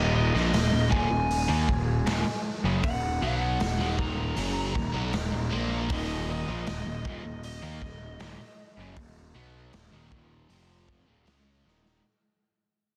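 A growly, fuzzed-out electric bass sits up front in this dark, cathartic alternative rock excerpt, joined at 0.4 seconds by a punchy, gritty garage drum kit with a bright stone-room character. Two double-tracked overdriven rhythm guitars, one a bright cranked stack and the other a crunchy part with a phaser, play the riff in the background, while a lo-fi lead guitar with overdrive and digital delay carries a high melody until 11.2 seconds. The dry, dense, heavily limited mix fades throughout and closes with a drum fill from 11.6 seconds.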